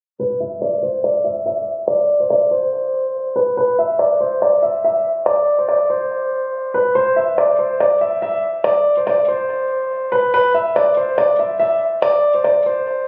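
Captured on a phone in the room, this short cut from a longer hip hop piece sits in a moderate concert hall reverb of about 2.3 seconds, with an extra layer of club reverb and compression. The mood is menacing and dark, set at 142 BPM in 4/4 with a half-time feel. A baby grand piano is the only part, carrying the melody from 0.2 to 13.1 seconds within a narrow span from B4 to E5. Its tone is dark and mellow, with long sustain, and it sits up front in the mix. A low-pass filter sweeps across the piano for the whole passage, and a digital delay adds trailing repeats to its notes.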